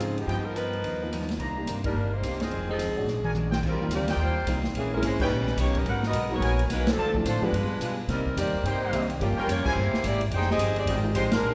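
Swung eighths in 4/4 carry this sultry, brassy big band swing passage, cut from a longer piece, where a bright saxophone section with light vibrato leads up front over woody pizzicato upright bass and a polished, airy drum kit with a punchy kick, while a distant, mellow trumpet section adds stabs, the band hits accents, a drum fill at 3.1 s leads into a change of harmony at 3.6 s, and a clean, picked hollow-body electric guitar and a warm baby grand piano sit in the background of a moderate hall reverb.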